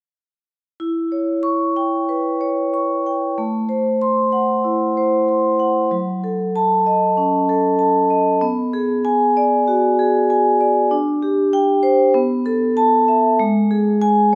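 A solo vibraphone enters at 0.8 s, struck with medium hard mallets and played with the motor off, giving a dark, metallic tone that sits up front. This contemporary classical fragment, cut from a longer piece, moves in a loose rubato over a 4/4 frame, and its mood is hypnotic and reflective. The harmony drifts through a chain of minor sixth chords, Em6, Am6, F#m6 and Bm6, before turning to suspended sevenths, D7sus4 and then B7sus4, and the harmony falls away just before the instrument stops at 14.3 s. The part spans from F#3 up to C#6, and its smooth, ringing notes bloom into a wet recital hall reverb with a 1.7-second decay. The instrument is tuned slightly high, to A4 = 441 Hz.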